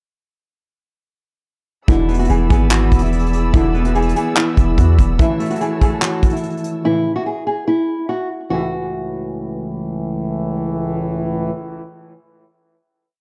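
At 1.9 seconds the whole band enters at once on a brooding, melancholic trap hook: a soft brush kit plays a half-time beat with a punchy kick, handclaps and fast hi-hat rolls, while a deep, sine-like 808 bass holds long sub notes that follow the kick. Up front, a dark, fingerpicked nylon-string guitar repeats a small looping melody, like a sampled loop, softened by a low-pass filter. Beneath it, a clean electric guitar plays a patterned eighth-note arpeggio with harmonic tremolo. A muted, veiled string section bowed con sordino holds a sustained pad with light vibrato, and a mellow brass section adds short, smooth-topped stabs trailed by tape echo. The bass drops out at 5.2 seconds, and the drums, strings and electric guitar fall away soon after, leaving the nylon guitar and the brass to carry the final chord until the brass stops at 11.5 seconds, all within a dark production with a touch of small-room reverb.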